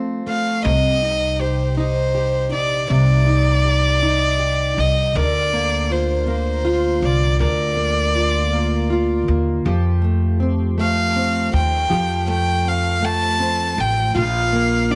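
A slow, swaying six-eight pulse at 53 BPM carries this romantic pop ballad excerpt, set up by a fingerpicked, double-tracked steel-string acoustic guitar with a full-bodied jumbo tone that opens at 0.0 seconds. A single violin enters at 0.3 seconds with an intimate, up-front melody, bowed sul tasto with an airy, soft attack and light vibrato, and a woody pizzicato upright bass joins at 0.6 seconds. The harmony moves from F through Cmadd9, Bb and Fadd9 inside light reverb and small-room ambience.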